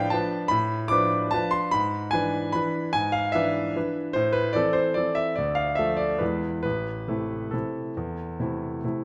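Classical piano waltz in A minor, wistful and elegant, moving in 3/4 at a flexible rubato pace between 130 and 156 BPM. A clear concert grand piano plays solo for the full 9.0 seconds of this brief passage cut from a longer piece, ranging from a deep bass at A1 up to D6. Its tone is smooth with a vintage character, and it sits up front in a moderate recital hall reverb that gives the notes a 1.6-second tail. The harmony opens on a half-diminished colour over an A bass, moves through E7 with G# in the bass, and settles on A minor at 4.2 seconds. A short turn through D minor and E leads back to A minor at 6.7 seconds, rounding off the phrase with graceful melancholy.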